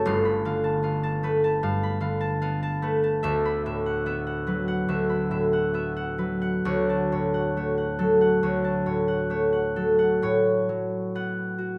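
A solo concert harp, fingerpicked and ringing up front in light reverb, spans G1 to B5 in a serene, peaceful classical passage cut from a longer piece, moving with rubato at 61-79 BPM in 4/4 through G9, D69 and Dmaj7 chords before turning to A69 as a new section begins at 10.2 seconds.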